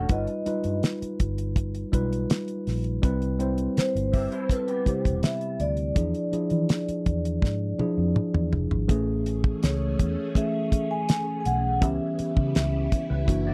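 A dry, close 1970s-style studio sound frames this romantic, lush soul excerpt at 82 BPM, where a mellow soft-mallet vibraphone carries the melody over a worn, slightly out-of-tune tine electric piano, a dark, foam-muted fingered bass and an up-front damped drum kit with a fat snare and tight kick, while a twangy, slightly broken-up electric guitar riff drops out at 5.7 seconds, a drum fill arrives at 7.4 seconds, and a swirling, sawtooth string machine with chorus and phaser swells in at 8.9 seconds as the chords move from G7b13 to Amaj7.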